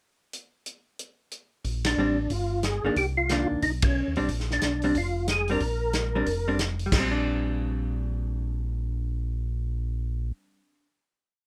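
A swinging 182 BPM groove in 4/4 drives this short, soulful and greasy soul jazz organ trio piece in Bb major, where a small-room acoustic drum kit keeps backbeat time on the hi-hat from 0.3 seconds, a round, lightly overdriven organ bass lays down a two-feel line through slow rotary and chorus vibrato, a percussive, clean second organ states a dark motif-based melody, and a compressed hollow-body electric guitar comps in syncopated three- and four-note shapes, with band accents at 1.8 and 3.8 seconds before a final chord rings out in a rough home demo mix with light reverb.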